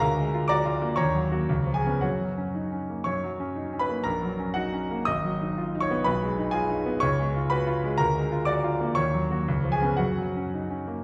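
A classical virtuoso piano study in F# major, this brief excerpt from a longer piece has a heroic, brilliant mood, moving in 2/4 at roughly 111-126 BPM with a flexible, rubato feel. A solo grand piano carries everything from 0.0 to 11.0 seconds, ranging from G#1 up to D#6. Its tone is clear, smooth and vintage, with a short sustain that keeps the figures crisp, and it sits up front in the sound. The harmony circles through A#7/D, D#m7 and C#7 to land on F#, then wanders through G#m7 and G#m/B to C# before the same turn returns near 8.0 seconds and resolves again on F# at 10.0 seconds. A second statement of the opening material begins at 3.1 seconds, all of it bathed in the wet reverb of a church or concert hall with a long 2.3-second decay.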